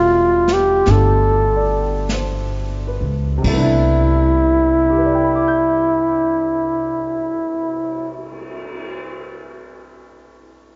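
This jazz ballad has a tender, late-night mood, moving at a slow 42-55 BPM in 4/4 with a lazy swing on the eighth notes, and it is cut from a longer piece in C major that opens on a Cmaj13 chord. A bucket-muted trumpet carries the melody up front, with a veiled, raspy tone, vibrato, scooped notes and a growling, gritty jazz edge, before it stops at 8.2 seconds. A warm, natural grand piano accompanies throughout and is the last part still sounding at 10.8 seconds. A woody, growly pizzicato upright bass on steel strings sits close and thumpy beneath, and a brush kit with dark cymbals, a medium-tuned snare and a boomy kick enters at 0.5 seconds, sitting low in the mix. The tempo slows over the opening bars, and a cathedral-like reverb with a long tail fills a church or concert hall space, with a dull top end and a faint mains hum underneath.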